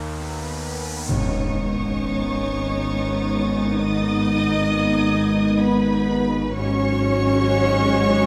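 An analog drone with a nasal, evolving sawtooth character and chorus opens this eerie, mysterious suspense cue alongside an electronic riser, with two lush violin lines and a dark, distant French horn section arriving at 0.2 s in a slow 3/4 at 66 BPM in G# minor. At 1.1 s an electronic impact and soft, round timpani land on G# minor as violas, a tight trombone section, a clear double bass section, a very quiet cello section and a faint, high violin texture join in. The strings sing with rich vibrato inside a wet scoring-stage reverb, and the harmony shifts to F#sus2 over G# at 6.5 s in this fragment cut from a longer piece.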